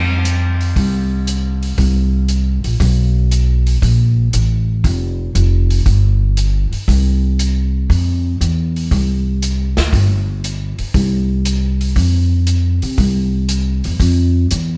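Joyful and brassy, this big band swing excerpt in F major moves at 118 BPM with a swung eighth-note feel, as a woody, up-front pizzicato upright bass holds down the low end from the first moment while a polished, airy drum kit with punchy kick, medium-tuned snare and hi-hat joins at 0.3 seconds, all in a dry sound.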